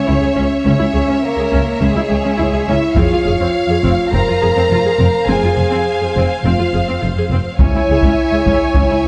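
Dark, softly attacked violins carry an expressive melody over a second violin line and mellow French horn chords, soon joined by lush viola accompaniment and a bass of bowed cellos and a distant double bass section, all in a heroic, dramatic orchestral film-score vein. Hard-stick taiko drums break in at 3.0 seconds and return at 7.6 seconds beneath the vibrato-rich strings. The scoring stage reverb lends a moderate sense of space, and the fragment feels cut from a longer cue.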